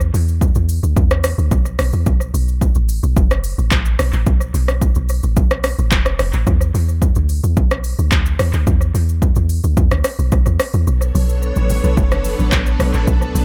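Hypnotic and soulful, this amapiano excerpt moves at 109 BPM in B minor, driven by a deep, round, percussive log drum bass and an up-front electronic drum kit of punchy kick, smooth hi-hat, handclaps, rim click and shaker, with analog delay on the kit. At 10.9 seconds the kick drops out until 12.0 as shimmering, vintage string-machine violins arrive with sustained, bright chords, ensemble chorus and sidechain pumping. Ringing acoustic congas played with soft hands join in the background at 11.2 seconds, all within an echo-heavy digital ambience.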